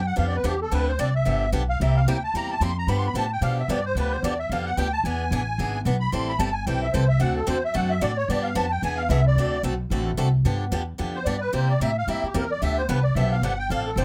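Swinging and lively, this acoustic jazz manouche excerpt features a reedy, shimmering musette accordion soloing up front over a woody, thumpy pizzicato upright bass on gut strings, while a bright, boxy picked acoustic guitar joins at 0.2 seconds to comp through the changes, all captured with close, detailed microphones and light reverb.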